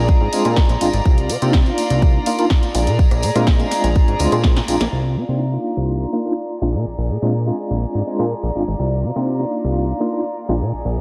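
This is a dreamy mix soaked in lush hall reverb: a short cut of filtered disco house in a straight 4/4, funky and nostalgic in mood. A fat, detuned sawtooth analog bass sits up front with a fast-attack filter pluck, and a punchy, layered electronic kick drives beside it. A worn, slightly out-of-tune tine electric piano plays mellow accompaniment through a combo amp, colored by medium tremolo and phaser. Above it, a studio violin section holds soft, floating sul tasto chords with a smooth top and a touch of vintage sampler grit. An analog drum machine adds hi-hat, rim click and a snare re-recorded in a large room, while a tambourine stays in the background. The kick drops out at 4.5 seconds, and at 4.9 seconds the drum machine and tambourine stop after a brief fill. A filter sweep then carries the bass and strings, all pumping and filtered, through to the end as Cm11 and Bb7 chords alternate, with the piano fading out just before the close.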